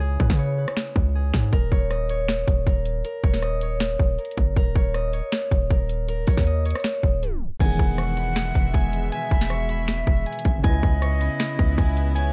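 Eerie and melancholic, this dark half-time trap cut from a longer piece centres on a ringing, fingerpicked acoustic harp melody softened by a low-pass filter and digital delay, while round, gentle electric-piano-like synth keys with chorus and tremolo sit in the background, heard briefly at the start and again from 7.5 s to the close. From 0.2 s a produced trap kit sits up front, with a hard-clipped kick, sharp snare, bright hats, finger snaps, rim clicks and crash, all re-recorded in a small room, alongside a punchy, heavy 808-style sine bass with a noise layer. After a tape stop at 7.2 s, the second part opens at 7.6 s, where a breathy silver flute with a straight tone and lifted highs adds a delayed second line and a reedy, gut-string section of bowed strings with light vibrato holds sustained chords.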